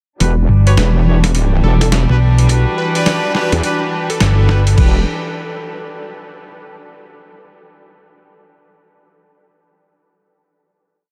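A swung, edited boom bap beat of gritty, pitched-down snares, closed hats and crash over a thumpy background kick drives this playful glitch hop build, where an up-front detuned wobble bass with changing wobble speed and a dark, round hollow-body electric bass playing chopped phrases sit beneath brilliant, loose horn stabs, a distant sul tasto string pad under a filter sweep, and a catchy plucky unison lead with cassette tape colour, the dreamy mix soaked in reverb as a final Em7 chord rings out from 4.8 seconds.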